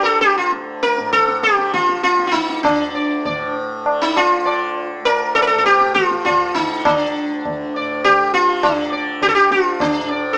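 Longing and introspective, this short cut from a longer Hindustani classical performance moves in a seven-beat cycle and quickens steadily throughout. An up-front, plectrum-plucked sitar carries the melody with a bright, buzzing tone and shimmering sympathetic strings, over a softly plucked tanpura drone set well back, while low-tuned, ringing tabla joins at 0.2 s. Played live in one room, the group sits in a moderate studio reverb with a small-speaker character.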